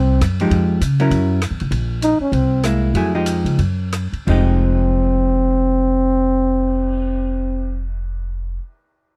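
A forceful, close-miked trombone carries the melody up front in this short fragment of small-group swing and bop, its punchy, scooped notes sitting between C4 and Eb4 with a late-night, swinging mood. An up-front pizzicato upright bass with steel strings gives a woody, thumpy low end, while a clean, picked hollow-body electric guitar adds dark chordal accompaniment. A compact cocktail drum kit sits well back in the mix, with dark cymbals, a punchy kick, hi-hat, ride, rim clicks, a crash and a cymbal swell. The tempo falls between 170 and 199 BPM in 4/4 with a light swing, and the music slows down from 1.7 to 4.3 seconds as the harmony in F minor moves through Fm9, Gb7, Bbsus4 and C7b13, passes briefly through an unharmonized moment at 3.6 seconds, and returns to Fm9 at 4.3 seconds. The dry, close, 1970s-style studio sound keeps the room almost free of reverb, and the trombone stops at 7.9 seconds while bass and guitar ring on to the end.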